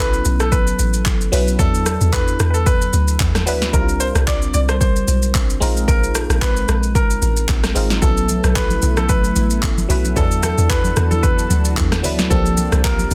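Amapiano at 112 BPM with a gentle 16th-note swing and a soulful, deep mood, built on suspended ninth chords such as B9sus4 and E9sus4, where a clear, polished grand piano carries the melody through tape echo over a biting, barking FM electric piano with a phaser and a round, dark log drum bass. An overdriven deep house kit sits up front with a punchy snare, deep kick, handclaps, rim clicks, shaker and hi-hat. At 8.0 s a lush, detuned unison pad with chorus and sidechain pumping enters in the background alongside very quiet, soft-handed congas, all pressed into a dense, heavily limited master with little reverb.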